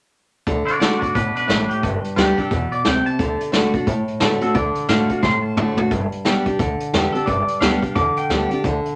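A snug small-room sound frames this rollicking, retro rockabilly excerpt with a swung feel, as an up-front picked dreadnought acoustic guitar, a woody, thumpy pizzicato upright bass on gut strings, and a vintage brushed kit with a tight kick and a rolled-off top carry the shifts between D and G beneath a clean, twangy electric guitar melody bathed in spring reverb, with a drum fill arriving at 5.2 seconds.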